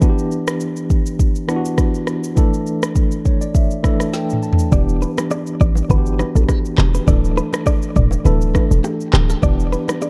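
A dry, dark-toned mix carries this sultry, mellow afrobeats piece at 102 BPM in E minor, with a lightly swung 16th feel and chords moving between Em7 and Dsus2. A bright tine electric piano with medium tremolo, played through a combo amp, sits up front alongside an electronic afro-pop kit of deep kick, woody snare, rim click, handclaps, shaker and toms, and both piano and drums play fills leading into the 4.7 second mark. From 4.7 seconds a punchy, tight 808-style bass with a fast attack joins, along with a clean, compressed, direct-recorded electric guitar riff carrying tremolo and digital delay, and soft-handed congas and bongos sitting very quietly in the mix.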